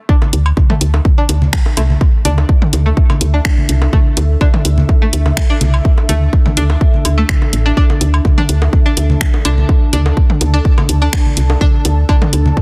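A punchy, up-front electronic kick drives this cool, quirky minimal techno drop in a lightly swung 4/4, alongside a layered house kit of finger snaps, hi-hat and softly clipped snare, plus electronic bongos, congas, cowbell and toms. A round, woody FM bass sits up front with sidechain pumping, while a twangy, string-like resonator pluck plays a bright, vintage-edged riff that warbles through chorus, phaser and dub echo. From 1.7 s a deep, moody ambient pad of detuned sawtooths with a sub octave enters on a slow attack under its own built-in reverb, all within a dense, heavily limited modern master cut from a longer piece.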